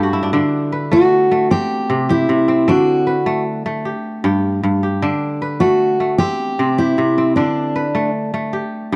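A ringing, crisp kora opens with a brief fill and carries flowing arpeggios throughout this joyful nine-second excerpt of West African string and xylophone music in a straight 12/8. From 0.9 s a dark, full-bodied fingerpicked steel-string acoustic guitar joins up front with a compact melody, its finger squeak audible over chords that move between D and C. The dry, close sound has a 1970s studio character, with light reverb and a small room ambience.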